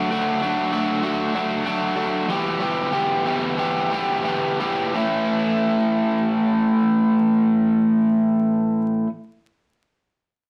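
Upbeat yet wistful, this short rock fragment is cut from a longer piece and sits in A mixolydian at 84-99 BPM in a straight 4/4, tuned to A4 = 444 Hz. A single overdriven electric guitar carries the whole passage alone from 0.0 to 9.1 seconds, its bright, picked, double-tracked tone sitting compressed and up front across a range from E2 to G4. The tempo slows over the opening section, which moves from D/F# to Em at 2.3 seconds before a second section arrives at 5.0 seconds on an A chord. A wet studio reverb gives the guitar a modest sense of space, while a layer of vinyl crackle adds a worn, nostalgic texture to the recording.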